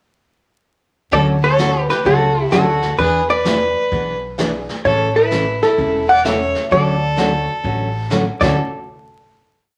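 Vinyl crackle and a wet studio reverb frame this short, cheerful, down-home western swing piece in D major, swinging along in 4/4 at 129 BPM. Up front, a clean, compressed hollow-body jazz guitar states a motif-based melody over Dmaj7, E7 and A, while a clear, earthy fiddle bows a harmony line mostly in thirds with light vibrato, and a bright, full-bodied dreadnought acoustic guitar picks a four-to-the-bar rhythm. A woody gut-string upright bass thumps a pizzicato two-beat root-and-fifth line with walk-ups beneath a distant, roomy brush kit with snare sweeps, dark cymbals and a boomy kick; a detuned, jangly honky-tonk piano joins in the background at 2.5 s with syncopated close-voiced comping, before a final hit at 8.6 s.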